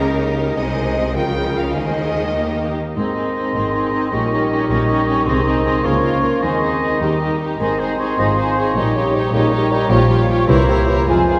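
Classical music in a stormy, restless 6/8, this fragment of a dramatic romantic orchestral movement opens with strings alone: a dark, woody violin section on the melody, a second violin section adding a lush line, rich violas, and clear cellos with distant double basses on the bass. At 3.0 seconds a bright oboe, a soft-edged clarinet and a hollow, pure silver flute join with their own lines, over a vintage-toned bassoon and sustained chords from a mellow French horn section, all heard from further back in a reverberant concert hall.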